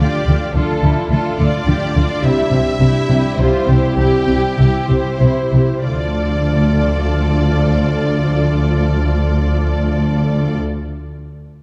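Cinematic orchestral music in D minor and 3/4, dark and epic, moving at 91-107 BPM and slowing down between 1.4 and 5.9 seconds, where lush bowed violins carry a smooth vibrato melody over a distant second violin line, focused violas, a background bed of sustained French horn chords, soft-attack cellos and up-front woody double basses, all shifting from Dm to C and back to Dm within a reverberant concert hall.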